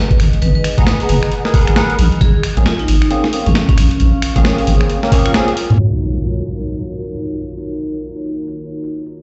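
Swung sixteenths at 134 BPM in 4/4 drive this soulful, late-night two-step UK garage excerpt in Eb minor, where a gritty, thumpy electronic kick and a sampler-style kit of finger snaps, hi-hat and high-tuned snare sit under a deep wobbling bass with sidechain pumping, a ringing hard-mallet vibraphone melody with dub echo, barky tine electric piano stabs with ensemble chorus, and a moody, detuned ambient pad in the background, all set in large-room reverb with a faint mains hum, until an up-front electronic impact at 5.8 s opens a closing passage of filter sweeps over the electric piano after the kick has dropped out at 5.2 s.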